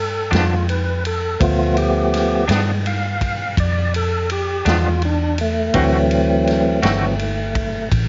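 This short cut from a longer piece is set in a small room where the top end is gently rolled off. It is a gritty, rollicking slow blues in 12/8 at 55 BPM counted in dotted quarters, played with a straight feel and tuned slightly sharp to A4 = 445 Hz. Up front, a fat, lightly overdriven tonewheel organ takes the solo with sustained chords, its key click, chorus vibrato and slow rotary speaker giving it a churning body as it moves from G7 to D7 at 5.7 seconds. Beneath it, a vintage foam-muted electric bass, played with the fingers, sits round and punchy in the low register. A bright, twangy clean electric guitar, picked and compressed with tremolo, adds accompaniment from 0.3 seconds. A big-band drum kit joins at the same moment with a punchy kick, a medium-tuned snare and dark ride cymbal, sounding as if set in a big room.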